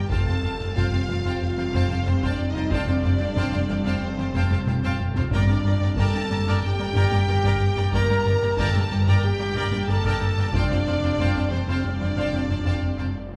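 A rubbery, bouncy square-wave bass riff drives this relentless, vast hybrid orchestral and electronic film-score excerpt at 92 BPM in 4/4, beneath a focused studio violin melody, a lush symphonic violin second line, clear French horn chords, viola accompaniment, a very quiet ethereal pad, snarling distorted saw bass, double bass and cello, and close, dry taiko with a fill at 4.7 seconds, all moving over Fadd9 and Gmadd9 in a scoring-stage reverb before a barely audible electronic swell at 13.1 seconds.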